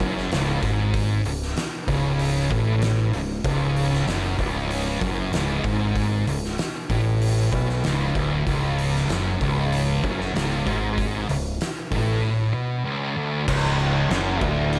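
Hypnotic and brooding, this stoner and doom metal excerpt sits in a straight 4/4 groove, cut from a longer piece. Two thick fuzz guitars carry the riff on a C#5 power chord, one dark and set back in the background, the other warmer and pushed up front. Underneath, a growling fingered electric bass with a bright, overdriven tone sits an octave below, while an oversized, low-tuned acoustic drum kit pounds through a bright stone room with a pumping feel, its punchy kick, fat snare and dark crash and hi-hat sounding saturated and gritty. At 13.5 seconds the harmony drops away as a tight, bright, double-tracked distorted guitar joins up front for a short closing passage. A light reverb wraps the mix.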